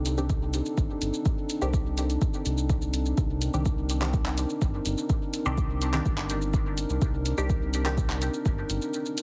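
A dark, nasal analog pad and a round, sine-tinged analog bass open this deep, cavernous dub techno excerpt together, the pad holding sustained minor chords up front with chorus and a slow attack, both parts breathing under sidechain pumping. The drums arrive almost at once: a layered deep house kit of handclaps, hi-hat and shaker, tape-warm and re-recorded in a small room, its hits trailing off into dub echo. A deep electronic kick sits prominently in the mix from 0.3 seconds, grounding the straight 4/4 feel. Filtered, detuned chord stabs with a muted pluck and short decay drift through a phaser and dub echo, also pumping under sidechain compression, until they fall away at 8.0 seconds. The overall sound is dry and heavily compressed, with a radio-like character, and the moody pad carries on to the close at 9.2 seconds.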